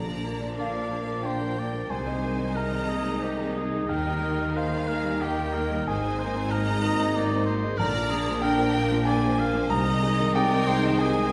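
Bathed in a wet scoring-stage reverb, this sorrowful, moving cinematic passage in a rubato 3/4 sets a lush violin section on the melody beside a second violin line, a clear, distant viola section, a dark, deep-bassed grand piano, a mellow horn section holding sustained chords, a rich cello section and smooth double basses, with very quiet, close and dry timpani heard only until 0.9 seconds and a distant, roomy solo oboe with vibrato entering at 0.6 seconds on a second line of its own.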